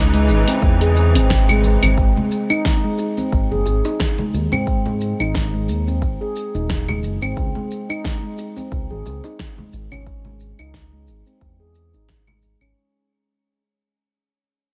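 A loping 89 BPM groove with a light 16th-note swing drives this meditative, mystical organic downtempo excerpt, where an up-front handpan rings dark arpeggios through tape echo over a smooth gliding sawtooth synth bass, a deep house kit with fat snare, claves, hi-hat and shaker, a deep electronic kick entering at 0.6 seconds, background bongos and congas, and a distant, lush string section whose biting bowed chords pump briefly before stopping at 1.9 seconds, as the harmony moves from C#m to G# and the whole fades out from 2.0 seconds in a dry mix.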